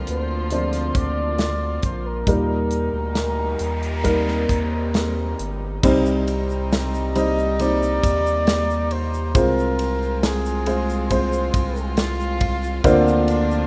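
A rough home-demo mix with light studio reverb frames this longing, heartbroken pop ballad excerpt, where a dark, woody upright piano and distant, reedy bowed strings carry the chords over a thick, saturated sub bass and an up-front acoustic drum kit with a tight kick, while a mellow, roomy flugelhorn sings the melody with vibrato and scooped notes, an electronic noise sweep enters at 3.0 s, a grainy, bright tube shaker joins in the background at 5.8 s, and an earthy cello section adds a second line from 12.0 s.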